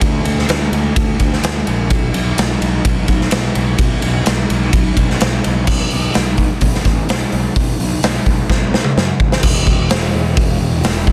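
Dry and densely limited, this short slice of quiet-loud alternative rock moves at 128 BPM in a straight 4/4, with an anthemic, bittersweet mood. A raw garage drum kit sits up front for the full 11.1 seconds, its punchy kick, medium-tuned snare, hi-hat, ride, crash and toms sounding saturated and gritty in a bright, pumping stone room. Beneath it a picked electric bass carries round, overdriven fuzz between E1 and F#2, and after a section change at 5.7 seconds a drum fill from 8.5 to 9.4 seconds carries the music into its closing stretch.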